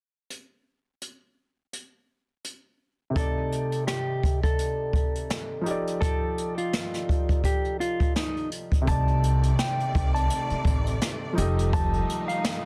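A swung 84 BPM boom-bap groove in C dorian opens on an up-front jazz brush kit with a boomy kick, joined at 3.1 seconds by a dark, long-sustaining baby grand and at 3.2 seconds by a clean, fingered electric guitar melody over Cm69 and F13, before lush bowed strings and a woody, thumpy pizzicato upright bass arrive at 8.9 seconds to deepen this gritty, dark hip-hop excerpt.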